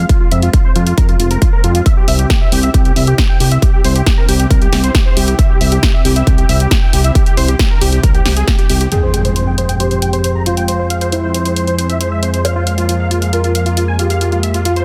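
A driving, straight 4/4 pulse at 136 BPM, set by a punchy, up-front electronic kick and a big-room kit of hi-hat and punchy snare in studio reverb, propels this soaring uplifting trance excerpt in F harmonic minor: a huge, airy supersaw lead with vintage 12-bit sampler grit, tape echo and sidechain pumping carries the melody over a lush, warbling chorused pad that gets a filter sweep and a fat, saturated analog bass moving from Fm to C, until the kick drops out at 8.6 s and, at 8.9 s, an electronic impact hits as a dark, boxy grand piano with audible action noise adds a second line through tape echo while the supersaw takes its own filter sweep, all in a dense, heavily limited modern master.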